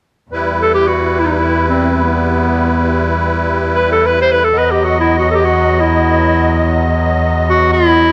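A clear, smooth-topped clarinet carries the melody in a classical solo style, sitting up front and trailed by a touch of tape echo, entering at 0.6 seconds. This short klezmer passage, cut from a longer piece, unfolds in free time in E harmonic minor, with a mood that feels both festive and soulful. Beneath it, a reedy, shimmering musette accordion with its wet tuning and vintage, band-limited character supplies the accompaniment from 0.3 seconds. A bowed double bass, played by one player, holds a low E with focused tone and vibrato. The harmony rests on E minor before shifting to B over E at 4.5 seconds, all wrapped in light reverb.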